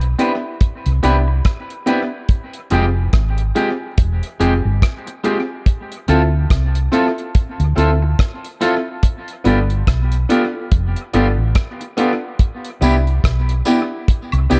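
A round, punchy hollow-body short-scale electric bass sits up front in this tender, smooth lovers rock reggae excerpt, its dark, amped tone carrying the low end at 71 BPM in 4/4 with a swung sixteenth feel. Beside it, a damped 70s drum kit of hi-hat, kick drum and rim click keeps a tight kick and a rolled-off top, with dub echo trailing behind it. A clear grand piano supplies intimate accompaniment, its action noise audible, while an electric guitar at the edge of break-up adds twangy, slightly broken-up stabs, also treated with dub echo. The harmony in C major moves from Cmaj7 through Fmadd9, Dm7 and G7 before returning to Cmaj7. Tambourine and woodblock join close and dry at 12.8 seconds, and the whole excerpt sits in a dark, warm production with light reverb and small room ambience.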